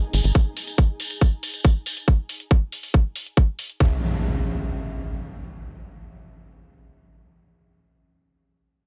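Driving and intense, this psychedelic trance excerpt at 139 BPM in a straight 4/4 opens with a tight, overdriven, up-front electronic kick drum, layered electronic hi-hats and a jingly, close acoustic tambourine that drops out at 2.1 seconds, while an up-front downlifter and impact bookends the section and carries on alone from 3.9 seconds in a dry mix.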